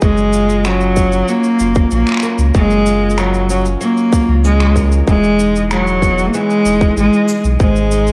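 A bowed cello leads this short folktronica passage at 95 BPM in a straight 4/4, carrying a clear, intense melody with vibrato and a smooth top, placed up front alongside a round sine sub bass that is deep, sustained and fast in its attack. Beneath them, a picked steel-string acoustic guitar plays dark arpeggios, with the odd finger squeak audible. An electronic kick drum, tight and overdriven, pushes the pulse, while an electronic shaker and finger snaps sit quietly in the background with their own overdrive. Both beat parts sound re-recorded in a large room. The harmony rests on Gbmaj7 before moving to Emaj7 at 5.1 seconds and touching Ab5 at 7.6 seconds, with the kick dropping out at 7.7 seconds. The cello, guitar and percussion carry a cassette-tape color, and a moderate spring reverb gives the delicate, hopeful home recording its gentle, slightly worn charm.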